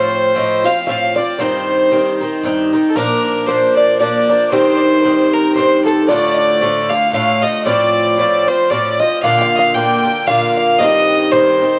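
A clear, nasal fiddle carries the melody up front in this driving, dark and lively Celtic waltz at 115 BPM in C dorian, joined by a bright, metallic Irish bouzouki accompaniment, a biting, airy-bowed second fiddle in the background and a twangy, plunky open-back banjo adding a very quiet second line, with moderate recital hall reverb and a dark production in this excerpt from a longer piece.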